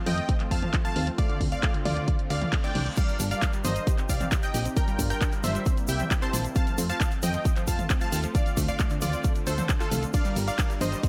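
A layered, punchy electronic kick sits up front in this driving, emotional uplifting trance excerpt, joined by an analog drum machine re-recorded in a large room (crash, handclaps, hi-hat, ride and toms) and a round, mellow FM bass. Above them, a detuned sawtooth supersaw stab carries the melody with tape echo. A bright, lush unison pluck spins arpeggios, also with echo, while an airy, evolving filtered supersaw swell holds chords from F through Dm7, Gm7 and Cm; the swell, pluck, stab and bass all pump under the sidechain. A very quiet reverse cymbal sounds at 2.5 seconds, and a grainy egg shaker joins in the background at 3.0 seconds, all inside a digital ambience.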